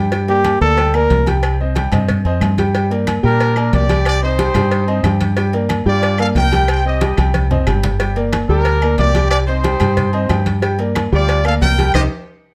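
Passionate and driving, this salsa excerpt in G minor at 183 BPM sets a punchy, clear trombone up front over a dark, round fingered electric bass, boxy baby grand piano, ringing low-tuned congas, a dry cowbell, agogo bells and timbales, and woody claves, before a mellow trumpet section with light vibrato takes the melody at 3.2 seconds, a drum fill arrives at 7.2 seconds and a band accent lands at 11.9 seconds, all over alternating Gm and Cm chords in light reverb.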